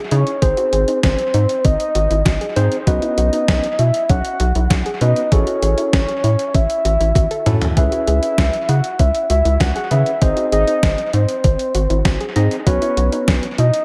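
This synth-pop excerpt moves at 98 BPM in a straight 4/4, with a cool, driving mood and an echo-heavy mix under light reverb. A gated 80s digital drum machine sits up front with a thumpy kick, overdriven grit and a gated reverb snare, alongside hi-hat and toms and a drum fill from 7.2 to 7.8 seconds. A rubbery, hollow square bass bounces beneath it, while a soft octave-layered synth lead carries the melody with a full, sub-octave body, chorus and vibrato. A clean tine electric piano adds accompaniment through dub echo, and a gentle, nasal pluck in the background spins detuned arpeggios with chorus. The harmony circles through G#, Bsus2, F#m7/A and C#m7 before returning to G# and Bsus2.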